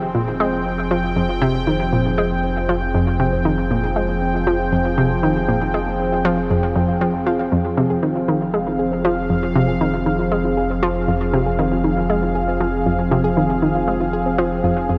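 Ambient, sequencer-driven space music in F minor at 118 BPM, this cosmic, hypnotic excerpt rests on a single Fm chord throughout its 15 seconds, cut from a longer piece. An airy, resonant pad sits up front with sustained chords and chorus, while a nasal, wave-folded analog pluck plays a riff through chorus and analog delay, and a deep, dark analog bass holds F1 beneath. A very quiet, mellow pluck adds gentle arpeggios from 0.1 seconds, all set in a huge ambient reverb with a 7.6-second decay.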